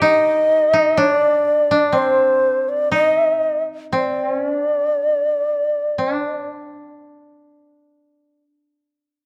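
Moving in a free, rubato pulse at around 57-62 BPM, this calm, austere fragment of Japanese chamber music is cut from a longer piece. A breathy, mellow shakuhachi carries the melody up front with vibrato, tongued chiff and a slightly unsteady tone, stopping at 6.5 seconds, while a dry, woody koto played with fingerpicks sounds a lower second line until 8.4 seconds. Close, detailed microphones and a light reverb keep both instruments intimate and present.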